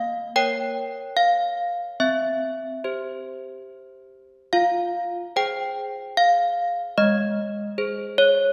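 A wet scoring-stage reverb surrounds this brief classical fragment, cut from a longer piece, and the room places the listener some distance back. Desk bells play solo from the start to 8.5 s, their clear, ringing tone sitting up front within that space, with a clanky edge and a slightly out-of-tune character. The mood is wintry and solemn, moving at a measured 73 BPM in 3/4 with a straight feel in F minor. The bells range from Ab3 up to G5 while the harmony passes through B-flat minor, C, F minor and A-flat.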